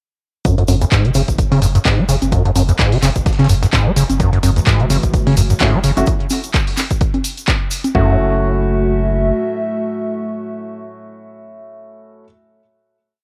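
A four-on-the-floor electronic kick drives this trippy, raw acid house piece at 128 BPM in F# minor, with a 56% swing on the sixteenths and the harmony opening on F#m7. Around it, a punchy analog drum machine adds closed and open hi-hats, high congas and handclaps, while a very quiet, gritty sampler-style breakbeat with a medium-tuned snare sits far back and a grainy egg shaker plays hand-played sixteenths in the background. Up front, an overdriven, squelchy acid bass runs a sixteen-step line with accents and slides under a filter sweep, colored by cassette saturation and tape echo, as a round, deep off-beat bass holds F#1 with sidechain pumping. At 4.5 seconds a moody, detuned pad enters with chorus and sidechain pumping, soon joined by sparse, echoing stabs from a warm grand piano that moves one chord shape in parallel. The groove gives way at 7.9 seconds to a final chord, with the pad and piano sustaining to the end, all heard through a home cassette recording with light reverb.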